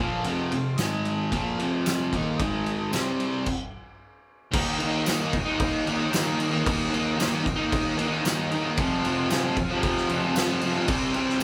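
This raw, swaggering garage rock excerpt sounds like a band playing live together in one room, with light reverb around it. A distorted, double-tracked fuzz guitar sits up front, its compressed, picked riff ranging from F2 to Eb4, while an oversized, low-tuned acoustic drum kit shares the foreground with a boomy kick, fat snare, dark crash and ride cymbals and a gritty, saturated tone with a rolled-off top. Behind them, a vintage combo organ holds buzzy, clean sustained chords with light vibrato, opening with a transistor fill at 0.0 seconds, and a jingly, bright tambourine joins at 0.8 seconds. The harmony moves among F, Ab5 and C5 before the band stops dead from 3.5 to 4.5 seconds, then returns on Eb and works back through F to C. The groove stays straight in 4/4 at 113 BPM throughout.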